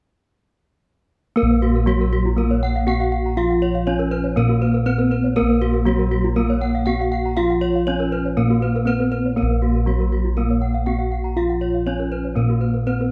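Round, mellow bronze bossed gongs sit up front with the bass line in this hypnotic Balinese gamelan excerpt in Bb pelog at 120 BPM, sounding from 1.4 to 13.1 s alongside four bronze metallophones: a bright horn-mallet melody whose paired tuning gives shimmering beats, a soft padded-mallet accompaniment in the background, a ringing horn-mallet arpeggio part, and a wooden-mallet arpeggio line set further back, all within a dark production and moderate recital-hall reverb.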